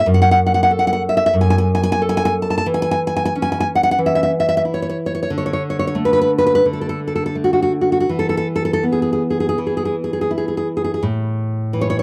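Rubato at 79-93 BPM in 4/4, this tender, sunny romantic excerpt in A major features a solo nylon-string guitar, fingerpicked and up front with a deep classical tone and audible finger squeak, spanning F#2 to A5 over chords moving from F#m through C#m/E, D5 and E5 to A5 at 11.0 seconds, captured in a dry, close 1970s-style studio recording with light reverb.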